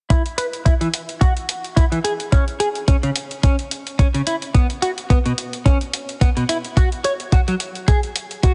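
Groovy and sunny, this short nu-disco excerpt moves at 108 BPM in 4/4 with a light 16th-note swing. A direct-recorded clean electric guitar carries the riff throughout, picked and up front with a scooped, compressed tone, spanning B2 to C#5 and colored by analog chorus, tape echo and a low-pass filter that sweeps across the whole passage. Underneath, a thumpy, sampler-style electronic kick drum sits prominently in the mix, while a gritty electronic hi-hat ticks along at a lower level, both compressed and at natural pitch. All three parts play from 0.1 to 8.5 seconds. The overall sound is squeezed and band-limited like a radio broadcast, with the top end rolled off and a light touch of digital ambience around it.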